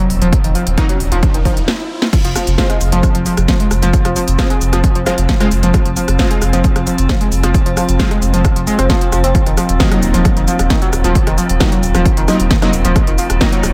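Cut from a longer piece, this techno recording has a light reverb and an echo-heavy mix, with a kick and kit re-recorded in a small room. It is driving peak-time techno at 133 BPM in straight 4/4, set in F phrygian with a relentless, hypnotic mood. A screaming, gritty overdriven synth lead carries the riff, its detuned sawtooth and pulse tones bright and guitar-like with chorus, vibrato, distortion, dub echo and sidechain pumping. Behind it sit aggressive, detuned rave stabs with a filter sweep, moving notch and cassette-tape colour, and an eerie, metallic inharmonic drone built from FM and ring modulation with a slow attack and long release. A deep, thick, tube-saturated sub bass and a punchy layered kick anchor the low end, while the techno kit adds a cracking snare, smooth hats, rim click, shaker and crash, its hats, cymbals and percussion pumping with the sidechain. An electronic riser builds over the opening Ebm bars, and a stop with a drum fill at 1.7 seconds leads into the drop at 2.1 seconds, where the harmony moves to Fm before returning to Ebm at 9.3 seconds.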